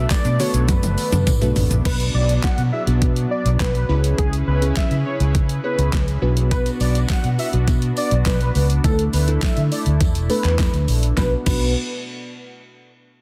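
Energetic and driving, this dance-pop excerpt in B dorian moves at 103 BPM in a straight 4/4, with an overdriven, knocking pop drum kit and a dark, round, foam-muted electric bass up front, the bass pumping along with glassy digital keys and a lush, warbling unison pad that breathe under sidechain and low-pass filtering. A velvety synth lead and a punchy unison pluck open alongside a very quiet, jingly tambourine, a drum fill at 0.7 s leads into a thick, bold unison lead with vibrato taking the melody at 1.9 s, and a long filter sweep carries the passage over chords from Bm through C#m7 to Dsus2. The tambourine returns at 6.5 s, and the dense, heavily limited mix stays close and dry with little reverb.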